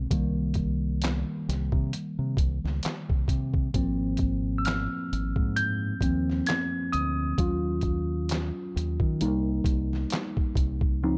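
A worn, slightly out-of-tune tine electric piano leads this short neo-soul and R&B fragment, lightly overdriven through a combo amp and sitting up front as it takes a solo across the full 11.2 seconds. The mood is soulful and late-night, moving at a slow 66 BPM in 4/4 with a gentle swing on the sixteenths. Beneath it, a deep dub fingered electric bass, dark and round, comes through direct and amped, also placed up front. A boom bap sampler-style kit, pitched down, compressed and gritty with a tape-warm character, pairs a thumpy kick and a medium-tuned snare with hi-hat and handclaps from 0.1 seconds. The harmony moves from Cm7 to Ab6/9 and then to Ebm7 before returning to Cm7 at 9.2 seconds, all wrapped in digital ambience and a dark, warm production.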